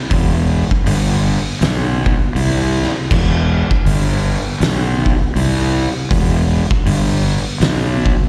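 This short cut from a longer piece sounds like a live gig heard through the venue's PA, fairly dry with a faint recital-hall ambience. It is ominous, heavy stoner and doom metal in E minor, moving at 80 BPM in 4/4 with a swung eighth-note feel. A fingered electric bass sits up front from 0.1 seconds, its overdriven fuzz tone bright and growly as it stays low between E1 and C2. An oversized, low-tuned acoustic drum kit enters alongside it, filling a stone room that pumps around a punchy kick, a fat snare, a hi-hat and dark crash cymbals. The drums come across saturated and gritty and also sit forward in the mix, carrying on until 8.2 seconds.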